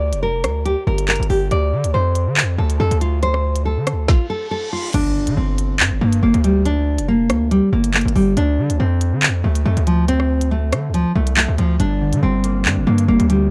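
A dry, dark mix with little reverb opens this ominous drill excerpt, moving at 140 BPM in a half-time feel in G minor over a slow alternation of Gm and Dm7. Up front, a full-bodied nylon-string guitar carries the melody with a fingerpicked, deep classical tone, and finger squeaks are audible on the strings. Beside it sits a heavy, saturated 808-style bass with a sine core, a noise layer and a fast, decaying attack, while the electronic drum kit punches through with a hard-clipped kick, woody snare, crisp hi-hats, handclaps, rim clicks and crash, all carrying a tape-like warmth. In the background, a reverse cymbal rises from 4.3 seconds into an impact at 4.9 seconds, marking the start of the second section. At 11.8 seconds a clean, fingered electric guitar joins on accompaniment, its shadowy tone thickened by ensemble chorus.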